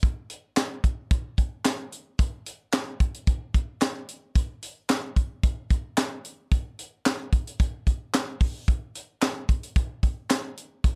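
A straight 4/4 funk groove at 111 BPM drives this short excerpt, cut from a longer piece, with a slick, danceable mood. A tight funk drum kit runs the full 11.0 seconds, its high-tuned snare, tight kick, hi-hat and handclaps sitting up front with the natural sound of a small room. A group handclap joins at 0.6 seconds and carries on until 10.4 seconds, tucked in the background with a human, crisp, vintage character and a band-limited tone. The production is dark and warm with little reverb, keeping the whole performance dry.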